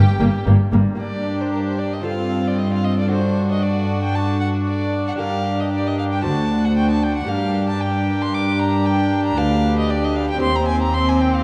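An up-front cello section with a reedy, gut-string tone anchors this stormy, dramatic baroque-style concerto movement cut from a longer piece, as a single period-style violin with light vibrato carries the melody alongside a very quiet violin section, a background violin section holds a smooth-topped second line, a rich viola section and a delicate fingerpicked lute with double strings fill the accompaniment, and a double bass section sounds only from 0.2 to 0.8 s, the whole set in a dark, wet scoring-stage reverb.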